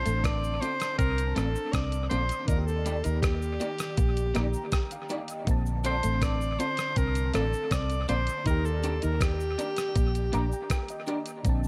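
A dry, close-sounding clip of sweet, romantic lovers rock reggae at 80 BPM, where a bright alto saxophone with light vibrato and scooped notes sings the melody up front over a dark, round, foam-muted fingered bass and a thumpy 12-bit drum machine of kick, hi-hat and rim click with gated reverb, while a lush, dreamy FM electric piano with a soft pad layer adds chorus, phaser and fills at 4.0 and 10.0 seconds, and a clean picked guitar riff, slightly broken-up guitar stabs from a small old amp and a quiet cabasa sit in the background, with dub echo trailing the sax, keys, guitars and drums across Bbmaj9 and Ebmaj7 chords.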